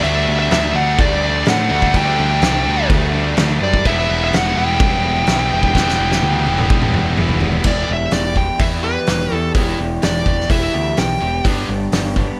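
A dark, smooth overdriven lead guitar sings over two bright, picked rhythm guitars, one overdriven and one high-gain, set back behind a growling electric bass and a roomy, distant-sounding indie drum kit with a fat snare, punchy kick and dark cymbals in this restless, bittersweet quiet-loud alternative rock excerpt. A drum fill from 5.8 seconds leads into a new section at 7.7 seconds, where the high-gain guitar drops out and a slightly broken-up guitar through a small old amp adds chorus-soaked arpeggios beneath the lead solo. A light reverb gives the mix a touch of space.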